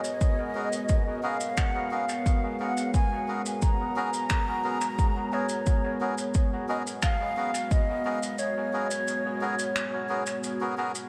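A straight 88 BPM pulse in 4/4 comes from an overdriven, up-front electronic kick that drops out at 8.4 s, alongside distant, roomy shaker and finger snaps carrying dub echo, setting a spacious, hazy ambient dub groove in G# dorian on a G#m11 chord, where a deep, dark detuned pad with chorus and vintage 12-bit sampler grit sustains beneath a reedy, nasal melodica stabbing through dub echo and an airy wooden flute melody with vibrato and a crisp attack, all set in a moderate echo chamber reverb in this excerpt from a longer piece.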